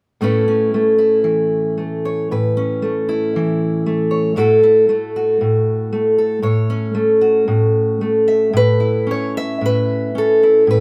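A close, detailed recording with little reverb puts a single fingerpicked steel-string acoustic guitar up front, its auditorium-body tone warm in this short folk excerpt cut from a longer piece. Played solo in A major with a rubato feel around 115 BPM in 4/4, the guitar spans A2 to E5 and moves through Aadd9, F#m7/A and A6 before returning to Aadd9 at 8.6 seconds for a brief closing passage. The mood is hopeful and gentle.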